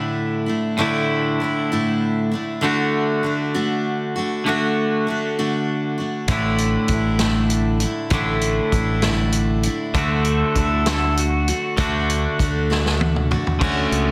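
A clean, twangy electric guitar riff rings out over a bright, full-bodied picked dreadnought acoustic in this jangly, nostalgic stretch of folk and heartland rock, moving at 66 BPM in 6/8 between Asus4 and D chords. At 6.3 seconds a growly, direct fingered bass and a punchy vintage kit with dark cymbals and a rolled-off top come in, the drums playing a fill just before the cut. At 10.0 seconds a compressed pedal steel slides in briefly with volume swells, all set in light reverb and small-room ambience under a dense, heavily limited modern master.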